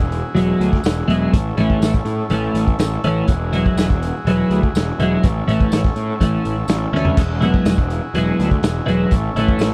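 A straight 4/4 beat at 124 BPM drives this hazy, trippy psychedelic rock excerpt in E major, where a saturated, gritty garage drum kit with a punchy kick sits up front beside a round, fuzz-overdriven picked bass, a clean twelve-string electric guitar riff enters at 0.3 seconds through a rotary speaker and double-tracking, a buzzy vintage combo organ holds sustained chords in spring reverb, a jingly tambourine joins in the background at 0.8 seconds, and the drums break into a fill at 6.9 seconds as the dry, close 1970s-style sound cycles between Eadd9 and A.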